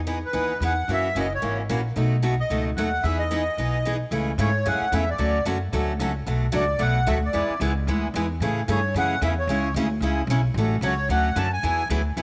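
A woody, thumpy pizzicato upright bass on gut strings opens this playful, lively excerpt of acoustic string swing in the jazz manouche style, moving at 224 BPM in 4/4 with a swung eighth-note feel. A bright, freshly strung picked steel-string acoustic guitar joins up front as accompaniment with audible finger squeak, and a reedy, sweet accordion carries the melody from 0.3 s with its light tremolo tuning. The harmony begins in E major on rich seventh chords, then shifts to A major at 4.1 s, all set in a small room with light reverb.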